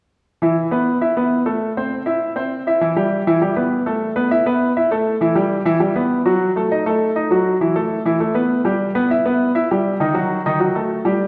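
A straight 4/4 pulse at a brisk 200 BPM drives this passionate Latin piece in E minor, cut from a longer work and carried entirely by a solo grand piano from 0.4 to 11.3 seconds, ranging from D#3 to E5. After a short opening phrase moving from E5 to A minor, a new passage begins at 2.8 seconds and cycles through Em, B7sus4, Emadd9, F#m6 and G6 before settling on D#dim. The piano sounds clear, present and up front, set in a wet recital-hall reverb with a 1.8-second decay that gives it the spacious ring of a church or concert hall.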